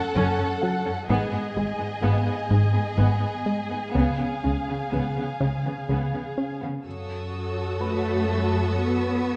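Uneasy and ominous, this cinematic fragment at 64 BPM in 3/4 sets a dark symphonic violin melody over a lush warm string bed of studio violins, violas, cellos with portamento and woody double basses, while a felt-muted upright piano adds a soft intimate texture with audible action noise, a punchy sawtooth analog bass riff plucks through until 6.7 s, and a high dark chamber violin section returns at 6.9 s, all bathed in a wet concert-hall reverb over chords moving from Gbm through Abm and Db7 to F#m.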